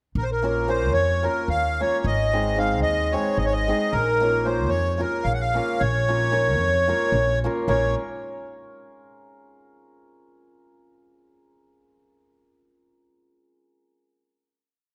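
In a restless 7/8, this short Balkan wedding-band piece moves from B-flat minor to A-flat and back, with a bittersweet mood. A reedy, sweet accordion with light tremolo tuning carries a dark, smooth melody built from motif-based sentence phrases, while a shimmering, ringing hammered dulcimer places triad chords on the off-beats and a woody, thumpy pizzicato upright bass with steel strings plays root and fifth on the main beats. All three parts sit up front in a moderate stage reverb, and the whole piece settles onto a final chord at 7.7 seconds.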